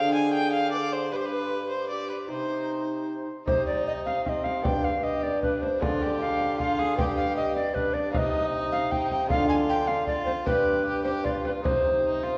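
A reverberant hall surrounds this short cut from a longer renaissance-style consort dance in C harmonic minor, moving briskly at 154 BPM in a straight 3/4 with a courtly yet rustic mood. Up front, a mellow tenor recorder carries the melody with an airy, wooden tone, tongued notes with a touch of chiff, gentle vibrato and rolled-off highs. Close behind, a single bowed violin plays a second line with a nasal, reedy gut-string sound and audible airy bow in period style. A delicate fingerpicked lute supplies the accompaniment on double gut strings, some doubled at the octave, while a solo bassoon holds the bass with a warm, punchy tone and light vibrato. At 3.5 seconds a deep, large frame drum joins, played with soft hands and carrying a small-room character, as the harmony circles through Ddim, G and Cm until the cut ends at 12.4 seconds.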